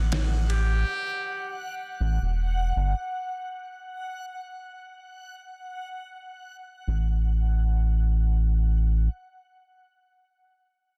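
A brooding, cinematic trip hop fragment in free time, built on a round, deep analog bass that holds from the start to 9.1 s over a brief A7(no3) chord, with a dreamy, detuned backwards swelling texture bathed in its own built-in reverb, a short compressed, pitched-down hit of sampler-style ride and snare, and a whispered, buzzy muted trumpet note at 0.5 s coloured by vintage 12-bit sampler grit and tape echo, set in a dry, dense, heavily limited mix.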